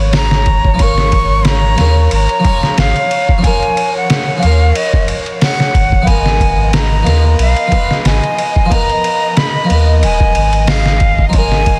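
A brilliant, plucked harpsichord with harmonic tremolo, 12-bit sampler grit and tape echo opens this melancholic, hypnotic trip hop excerpt at 91 BPM in G# dorian, joined at once by a dark, bowed string section holding chords in the background and a round, deep sub bass up front, then by a gritty, pitched-down sampler drum kit with a thumpy kick on lightly swung 16ths and an airy jazz flute melody with vibrato and tape echo, as G#m69 and A#m/G# chords alternate in a small room, with vinyl crackle on a dense, heavily limited master.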